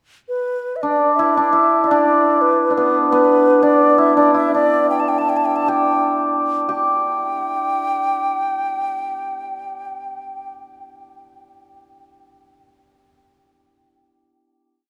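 Chinese traditional chamber music in a pastoral, graceful mood, this short complete piece moves freely between 58 and 87 BPM in 2/4 in the G gong mode: an airy, reedy low xiao with vibrato enters at 0.3 seconds on an ornamented modal melody, a shimmering, ringing hammered dulcimer joins at 0.8 seconds playing the same line with its own ornaments, and the pace slows from 3.4 seconds before both settle onto a long final note from 6.7 seconds inside a vast, echoing cathedral reverb.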